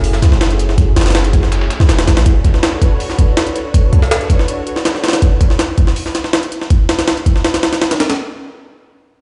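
Raw and nostalgic, this drum and bass excerpt cut from a longer jungle piece runs at 162 BPM in B minor, its chords moving from F#m9 to Bm9 before the harmony drops away at 5.2 seconds. A silky string machine holds soft, mellow sustained chords with a slow attack and long release, coloured by ensemble chorus and vintage 12-bit sampler grit, and it stops at 5.2 seconds. Underneath, a deep, boomy 808-style bass with a sine tone, a noise layer and a fast, decaying attack sits dark and up front before falling out at 2.2 seconds. The drive comes from an overdriven, pitched-up jungle sampler kit placed up front, with a thumpy kick, high-tuned snare and hi-hat, compressed and set in small room ambience, playing through to 8.2 seconds. Beneath it a very quiet, dusty soul sampler kit of hi-hat and medium-tuned snare adds gritty texture at natural pitch. The whole mix sounds as if played on a big sound system in a bare stone room, with light reverb and a dulled top end.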